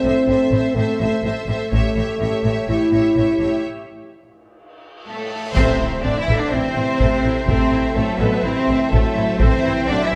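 An excerpt from an epic orchestral film score at 125 BPM in A minor opens with the full string body at once: a distant, lush violin section carrying the melody over a smooth second violin line, intense violas in the background, clear cellos and focused double basses anchoring the bass, while a dark, tight French horn section holds sustained chords. Heavy-stick taiko drums strike briefly at 1.7 s, the harmony shifts to A7, and a break at 3.6 s brings a huge, dark cymbal swell rising into a band accent and impact at 5.6 s, with a vintage-toned trombone section entering at 5.1 s to sustain chords underneath. From there the music turns to A dorian with the taiko pounding relentlessly and the horns returning, all set in a moderate scoring-stage reverb for a dramatic, driving close.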